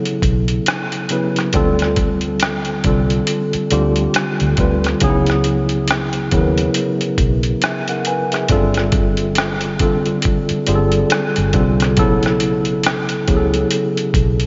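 A lush hall reverb wraps this short cut from a longer piece in a big, arena-sized space, with the top end rolled off for a soft, dusky sound. It is a smooth, late-night slice of neo-soul R&B in a swung 4/4, tuned slightly below standard pitch. A clean tine electric piano carries the chords from the first moment, sitting up front with a slapback echo and the glow of its built-in speakers as it moves through Bsus2, Dm7, C#m7 and Gsus2 before returning to Bsus2. A sampler-style boom bap kit arrives at 0.1 seconds, gritty, compressed and pitched down, with a thumpy kick, hi-hat and rim click carrying a tape-warm grain. A vintage fingered electric bass joins at 0.2 seconds, its foam-muted tone dark, round and punchy through an amp. The three parts then hold together as a single unhurried groove until the cut ends at 14.5 seconds.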